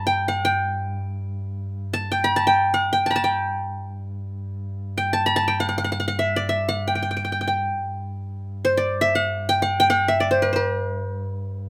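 In free time, this festive, warm fragment of Arabic maqam ensemble music sits in G maqam rast, tuned slightly above standard pitch. An up-front, plectrum-plucked qanun carries the melody throughout its 11.7 seconds, its triple strings giving a bright-edged sparkle. Beneath it a single bowed double bass holds a smooth, boxy drone on G with light vibrato, all in a lightly reverberant room.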